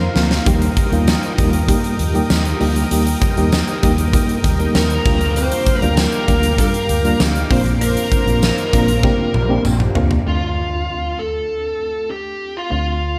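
1980s-style pop in Bb major at 98 BPM, this short cut from a longer piece feels romantic and nostalgic, moving in a straight 4/4 through chords of Eb, Bb6/D, Bbadd9 and Dm7. A mellow FM electric piano with tremolo carries the accompaniment throughout, over a dark, round, foam-muted fingered electric bass, while a lush, warbling sawtooth pad with chorus holds thick, detuned chords high above until 10.2 s. A huge arena drum kit sits up front with a punchy kick, fat snare, bright cymbals and a pumping hall sound, opening and closing its run with drum fills, and a very quiet, jingly tambourine adds a close shimmer. At 4.8 s a bluesy overdriven lead guitar enters with a distorted, picked melody bathed in plate reverb, joined briefly by a very quiet, woody marimba played with soft mallets as a dry, rustic second line. After the drums and pad fall away, the final stretch from 10.3 s settles onto the Dm7 with electric piano, bass and guitar in a modest small-room ambience.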